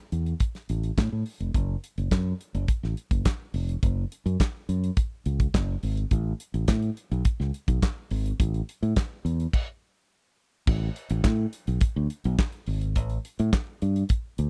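A damped, dry 1970s drum kit with dark cymbals, a tight kick, snare, hi-hat, crash and handclaps sits up front beside a fingered electric bass in this joyful, celebratory disco fragment cut from a longer piece, both playing in a straight groove through a close studio sound broken by a stop from 9.5 to 10.7 seconds.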